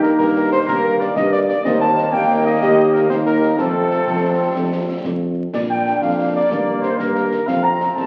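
A dark, close-miked cornet carries the melody with light vibrato in this rousing, proud military-style march for wind band, set in a straight 6/8 and cut from a longer piece. An airy, hollow group of small flutes plays a second line in the same upper register with straight tone and crisp attack, while a euphonium with a smooth top adds another second line from the background. Beneath them, a mellow tuba sits up front on the bass, a bright trombone section holds sustained chords in the background, and a very quiet French horn section with a vintage tinge fills in the accompaniment until 7.9 seconds. Concert snare drum, concert bass drum and clash cymbals with dark cymbals keep the march going from a small room. The harmony moves from Eb/G through Eb, F and Bb, then returns to Eb/G before closing on F. The whole band sounds through a recital hall reverb on a very old 78 rpm record, with vinyl crackle throughout.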